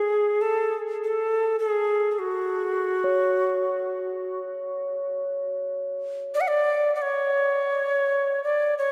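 In free time, this haunting, meditative world excerpt opens on a bright, airy cedar flute carrying the melody up front with a crisp, chiffy attack, straight tone and a touch of delay, and at 3.0 s a bronze singing bowl joins it with a metallic ring and slow beating, everything bathed in the long wash of a vast cathedral reverb.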